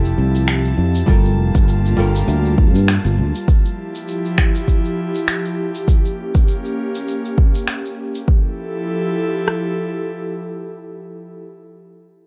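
Sunny and blissful, this short cut from a longer sunset chillout piece moves with a relaxed swung groove. A dark, clean hollow-body archtop guitar sits in the background with a picked accompaniment and a touch of analog delay, playing until 3.5 seconds, while a growly, up-front fretless electric bass with tube saturation and ensemble chorus drops away at 3.3 seconds. An airy, breathy pad with a slow attack and long release holds sustained chords through to 11.4 seconds, its detuned sawtooth and triangle tones softened by chorus and a noise layer. Electronic cabasa and finger snaps add a tape-warm, layered shimmer, and a deep house drum kit enters at 1.1 seconds with a deep kick and rim click placed up front. The harmony drifts through lush Fmaj9, Gm9 and Bbm6 colors, all captured in a dry, gritty cassette sound with little reverb.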